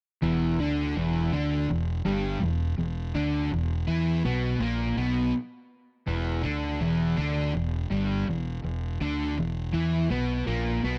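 Dry and close, this short rock excerpt has the feel of a 1970s studio, with barely any reverb around the players. The mood is raunchy and swaggering, moving at 82 BPM in a straight 4/4 and settled on an E5 chord. A crunchy, overdriven electric guitar carries the riff, picked and double-tracked and sitting up front in the mix. Underneath, a fingered electric bass plays low and growly, its fuzz and overdrive giving the bottom end a thick, gritty edge. Both parts play together from 0.2 to 11.0 seconds, and the clip is cut from a longer piece.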